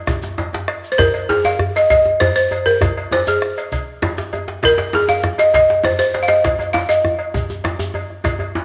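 Earthy and powerful, this short cut from a longer West African drum ensemble piece moves at 132 BPM in a straight 12/8, opening with a drum fill before the balafon enters at 0.9 s. A deep, close bombo, a metallic cowbell, a grainy shekere and two djembes with metal rattles (one medium-tuned with a vintage tone, the other tight and cracking under soft hands) drive the ensemble. Up front, the balafon, struck with hard rubber mallets, carries a woody, buzzing melody between Ab4 and F5, all set in a wet echo chamber reverb.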